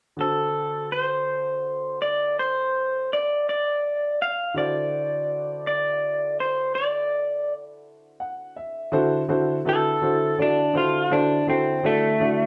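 Rolling along in a slow 12/8 at 55 BPM, this rollicking, swaggering blues in D mixolydian, cut from a longer piece, sets a slightly broken-up, lo-fi electric guitar from a small old amp on the melody over a boxy, intimate grand piano with audible action noise, the two played live together in one room with moderate studio reverb, as the harmony moves from D7 to D9, the piano slips in a fill at 7.8 seconds, and the guitar takes a clean solo from 8.9 seconds to the close.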